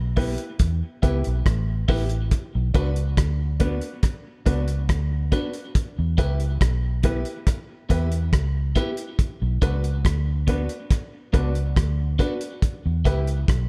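Serious and hypnotic, this roots reggae passage, cut from a longer piece, moves at a slow 70 BPM in a straight 4/4 in B minor, tuned to A4 = 438 Hz. A dark, round, foam-muted electric bass sits up front from the opening moment, joined at 0.2 seconds by a cloth-damped drum kit whose tight kick, hi-hat and rim click have a thuddy, rolled-off top. An electric guitar at the edge of break-up supplies compressed, picked accompaniment colored by phaser and tape echo, while a woody, slightly detuned upright piano adds short-sustained stabs. The harmony alternates between Em and Bm throughout, settling back on Em at 12.6 seconds. The small room and echo-heavy mix give the sound a close, echoing depth, with bass and drums dominating and the guitar and piano set further back.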